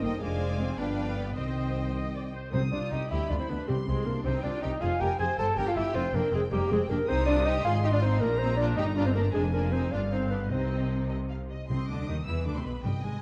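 A mellow solo clarinet carries a second line from 2.5 s through this urgent, stormy, quick classical-period orchestral passage in C minor at 105 BPM in 6/8, set against a distant, vibrato-laden violin melody, a clear, close second violin section, rich bowed violas, background cellos, lush up-front double basses, smooth-topped French horn chords heard only at the start, and articulate hard-mallet timpani, all within a dark, reverberant scoring-stage sound.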